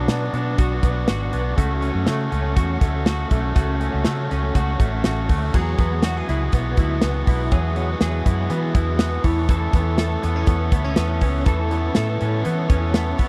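Jangly indie pop with a bittersweet, restless mood, cut from a longer piece, where a bright, twangy clean electric guitar plays chorused arpeggios over a biting overdriven guitar, a dark, foam-muted fingered bass and an up-front, polished drum kit with bright cymbals and a tight kick, all in a dry, close 1970s-style sound as the chords move from Bm and F#m to Eadd9 at 5.5 seconds and Aadd9 at 9.2 seconds.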